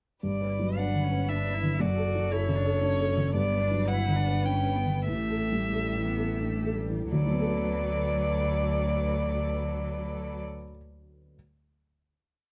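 In a rubato three-beat lilt, this short, tender neoclassical piece for piano and strings sets a focused solo violin melody with vibrato up front over rocking broken chords from a soft, felt-muted upright piano, a bowed double bass holding sustained low notes with expressive portamento, a cello counter-melody that answers at phrase ends, and a smooth string section in the background. It slows from 2.6 seconds into a final chord at 7.1 seconds, and the piano lingers alone from 10.4 to 11.4 seconds once the strings fall away, within a dark, intimate production with light reverb.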